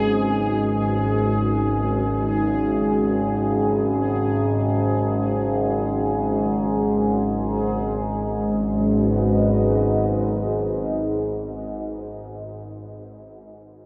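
Drifting in free time and centred on G# minor, this ominous, desolate stretch of dark ambient drone is cut from a longer piece and tuned slightly sharp of standard pitch. Up front sits a resonant drone, built from sawtooth and sine, holding the low register from G#1 to G#2 with moving overtones, slow attacks and long releases, coloured by chorus, phaser and its own reverb while a filter sweep passes over it until 8.0 s. Above it, a deep, moody analog pad of detuned sawtooth and triangle tones with a sub octave sustains a G#m chord between G#3 and D#5, thickened by chorus. A quieter bubbling texture on G#4 shifts through random filter steps, its detuned, resonant sawtooth softened by chorus and reverb, and it stops at 8.0 s as the second section begins. The drone ends at 11.7 s and the pad at 12.4 s, all of it steeped in a huge, wet reverb with an 8.8-second tail and the worn, warbling pitch drift of old cassette tape.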